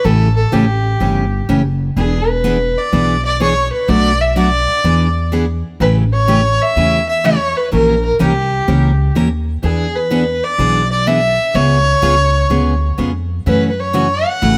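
A light reverb gives this short, cheerful cut from a longer western swing country piece a gentle sense of space as it swings along at 125 BPM in 4/4. A single dark, woody fiddle carries the bowed melody with light vibrato, while a bright, full-bodied picked steel-string acoustic guitar picks through changes such as A7, E7, A#dim7 and C#7b9. Underneath, an up-front upright bass with gut strings is plucked with a thumpy, warm tone.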